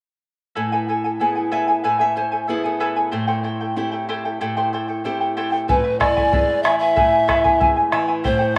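A bright, shimmering charango with double strings and a small, fingerpicked nylon-string guitar with fresh strings open this festive yet melancholic Andean folk excerpt at 94 BPM in 2/4, moving from E/A to C/A, with a guitar fill at 1.2 seconds. At 5.7 seconds a breathy, wooden pan flute with vibrato and a soft attack takes the close-miked, up-front melody, while a round, vintage, band-limited bombo joins beneath it. Wet spring reverb and small room ambience surround the ensemble.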